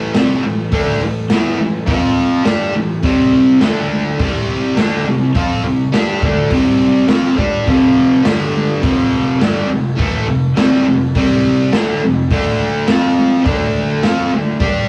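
A rough rehearsal-room recording with a short, moderate booth ambience gives this gritty, raw garage rock fragment, cut from a longer piece, a close and unpolished feel at a straight 104 BPM in 4/4. An up-front, double-tracked fuzz guitar carries the compressed, distorted riff from F2 to G4, moving from an opening Am through power chords on F, A, C, D and G. The raw garage kit joins at 0.1 seconds with a punchy kick, a medium-tuned snare and hi-hat, its saturated tone dark with a rolled-off top.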